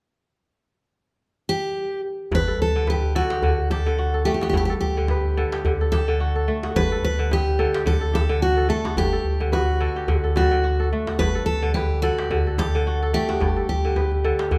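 A full-bodied, picked steel-string acoustic guitar carries the melody up front from 1.5 seconds in this hypnotic excerpt of West African string and xylophone music, set at 108 BPM in G major with a swung 4/4 feel. At 2.3 seconds a crisp, ringing kora joins with fingerpicked arpeggios, alongside a deep, smooth sine sub bass, while a tight, cracking djembe played with hard hands sits in the background. The parts move between G and D chords, and a moderate recital hall reverb lends the sound a warm space.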